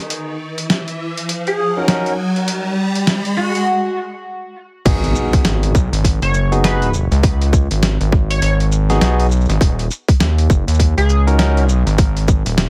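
Glitch hop at 101 BPM in G# minor with a 16th-note swing, playful and swaggering, this cut from a longer piece opens with a build-up where a riser, a filter sweep on the barky tine electric piano stabs and a tearing, bright sync lead with lush chorus and digital delay play over gritty, pitched-down boom bap sampler-style drums, then a brief break from 3.7 s. At 4.9 s the drop lands with an impact, a tight, overdriven electronic kick and an aggressive, saturated synth bass sitting up front, moving from D#m7 to G#m7 and back to D#m7 at 9.6 s. The mix has a heavily compressed, radio-like sound in a moderate studio reverb.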